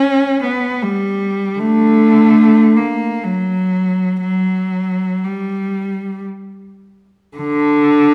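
A wet recital-hall reverb, lingering for about 1.8 seconds, surrounds this brief fragment of a classical piece for unaccompanied cello, lonely and mournful in mood. A single bowed cello plays up front and close for the full 8.1 seconds, its rich, smooth, even tone carrying vibrato between D3 and C#4. The free, expressive rubato in 3/4 drifts between 44 and 80 BPM.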